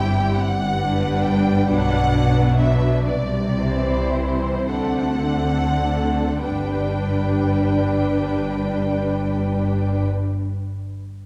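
A rubato 6/8 pulse sets the pace of this slow, tender romantic movement for string orchestra in G major, moving at roughly 33-47 BPM. It slows over its first 6.4 seconds as the harmony passes from G through B minor and C to D7 before settling on G. A smooth, close first violin section carries the melody above a lush, distant second violin line and an even viola accompaniment, while a focused double bass section sits up front and warm, expressive cellos lie in the background, all bowed with vibrato and heard from further back in a concert hall whose generous reverb gives this fragment its glow.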